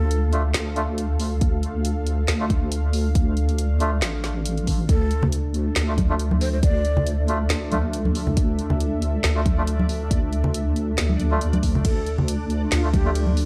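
A swung half-time groove at 138 BPM in D minor drives this cavernous, heavy deep dubstep excerpt. A chorused, sine-rounded wobble bass sits up front beneath a detuned sawtooth pad and nasal melodica stabs trailing dub echo, while a deep house kit of handclaps, dark hats, ride and woody snare is joined by a layered electronic kick at 1.4 seconds and close, dry congas at 5.2 seconds. A breathy, bright ney with vibrato drifts in and out through dub echo, and a reversed granular texture swells in the background from 5.8 seconds.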